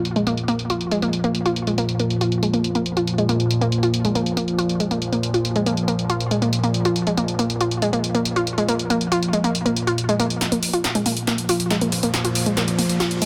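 A bright, round analog pluck riff with chorus, delay and a filter sweep leads this driving, hypnotic peak-time techno cut at 139 BPM, set over a Bb chord, a deep, warbling, dark ambient pad drone with a slow attack, and a punchy, tape-warm analog drum machine of hi-hat, snare and toms, before a drum fill and build-up arrive at 10.4 seconds and a faint electronic riser enters in the background at 11.6 seconds.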